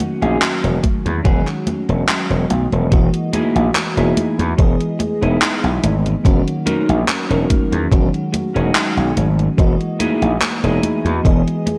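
A lightly swung groove from a gated 80s drum machine with congas, handclaps and hi-hat, anchored by a thumpy, up-front electronic kick, carries this nostalgic, faded vaporwave fragment, where an overdriven, punchy slap bass sits forward beneath a lush, dreamy FM electric piano with a soft pad layer and a dark, clean, fingered electric guitar riff bathed in chorus and tape echo, all heard through cassette-tape haze and light reverb over seventh and suspended chords.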